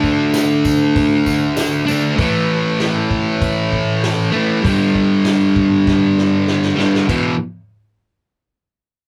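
A straight 4/4 groove at 98 BPM drives this swaggering, gritty garage rock excerpt in E minor, cut from a longer piece and captured as a rough rehearsal-room recording with a short, wet booth ambience. An up-front, double-tracked fuzz guitar riff, bright and compressed, leads through D5, A5, G5 and E5 power chords. A vintage acoustic drum kit with a punchy kick, a medium-tuned snare and a rolled-off top sits beneath it, and a jingly tambourine in the background drops out at 2.0 seconds. The drums land a fill at 5.9 seconds, and the guitar stops at 7.3 seconds.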